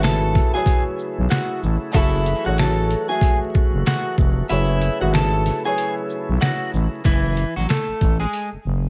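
A gritty, dark boom-bap hip-hop excerpt with a swung feel opens under vinyl crackle, with a compressed, pitched-down sampler-style drum kit and a thick, growling FM bass up front, while a slightly broken-up, scooped electric guitar carries the melody over a boxy, mellow grand piano with cassette-tape colour. A reedy tonewheel organ turns slowly through its rotary speaker in the background, and a lush bowed string section adds a brief tape-echoed stab at 1.9 seconds. The kick drops out between 4.5 and 7.0 seconds, and the bass outlasts the guitar and drums, sounding through to the end of the cut.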